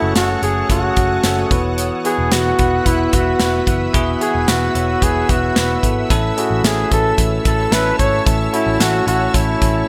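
A straight 4/4 pulse at 111 BPM drives this glossy, nostalgic 1980s-style pop excerpt, with a polished, airy acoustic drum kit of tight kick, medium-tuned snare and hi-hat entering at 0.2 s under gated reverb, while a dark, round, foam-muted picked electric bass holds the low end. A bell-like tine electric piano sits up front with clean accompaniment, and a shimmering, ethereal pad with slow attack and chorus sustains detuned chords high above. Over the F#m, Esus2 and A changes, a close-miked flugelhorn carries the punchy, vibrato-laced melody with delay, all in a bright digital production with plate reverb and small room ambience.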